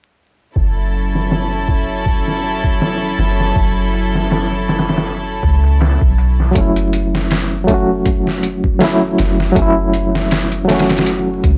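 Smoky and dark, this trip hop excerpt moves at 80 BPM in F# minor with a lazy 16th-note swing, settling on an F#m7 chord. A dark, bowed string section opens with soft-attack sustained chords played sul tasto, floating close and up front until it gives way at 6.5 seconds. Beneath it, a soft, round 808-style bass with a fast attack and decaying tone sits deep in the low register, roughened by transformer saturation. The sampler-style drum kit is compressed and pitched down, with a thumpy kick, a medium-tuned snare and hi-hat, all low-pass filtered and tape-warm, as if re-recorded in a small room. From 6.5 seconds a barky, reedy electric piano takes over the accompaniment, lightly overdriven with fast tremolo and tape echo, heard through its built-in speakers. The mix is dry and gritty, with vinyl crackle adding to the hardware character.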